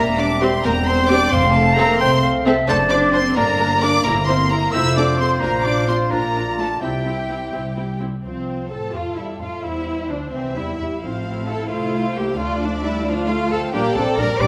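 Classical-period symphonic movement in a lilting 6/8, graceful and spirited, cut from a longer piece. A rich, expressive violin section carries the melody with vibrato, while a second, more focused violin line sits in the background beneath it. An airy, metallic flute and a mellow, distant clarinet add second lines through the opening, both falling away by about 8 seconds, as a clear horn section holds sustained chords behind the strings. A lush viola section with portamento enters at 0.4 seconds as accompaniment, and the bass is shared by a dark, intimate cello section and an intense, clear double bass section. Timpani struck with soft mallets give a round touch from 1.3 to 2.0 seconds, and the whole ensemble sits in a reverberant recital hall.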